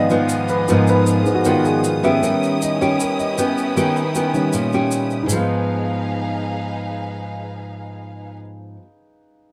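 A concert grand piano takes the lead with a solo over the first 5.3 seconds, its deep bass and long sustain shaping this intimate, wistful bossa nova excerpt in G# dorian at 156 BPM in a straight 4/4. Close beside it, a fingerpicked nylon-string guitar sits up front in classical style, and its finger squeak is audible. A lush symphonic violin section holds sustained chords with focused vibrato and a smooth top, while a grainy tube shaker adds a small-room sparkle until 5.4 seconds. The harmony moves from G#m6 to D#7b9b13 and back to G#m6 as the passage shifts into a new section. Light reverb and close, detailed microphones give the performance a warm, intimate presence.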